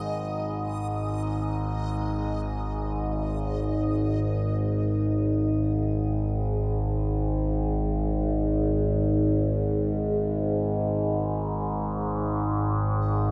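Soaked in a vast, cathedral-like reverb, this dark, cavernous ambient drone excerpt unfolds in free time as a fragment of a longer piece. An overtone-sweeping drone sits up front throughout, its sawtooth and sine tones evolving with moving resonant overtones, chorus, and a long, sustained release, while a bright, detuned sweeping pad hovers barely audible alongside it until 3.2 seconds. A reversed, dreamy texture with granular shimmer swells through the opening and returns briefly at 13.0 seconds.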